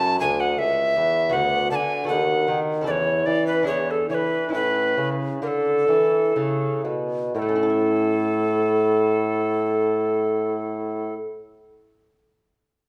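Set in a reverberant recital hall, this short baroque-style sonata excerpt in triple metre has a flowing, dance-like mood and gradually slows between 1.0 and 7.3 seconds. An airy, close-miked alto recorder with a crisp, chiffy attack carries the melody up front, while a bright, delicate fingerpicked lute with double strings, some octave-doubled, supplies the accompaniment. A mellow bassoon with light vibrato and a soft attack holds the bass line, sounding roomy and distant.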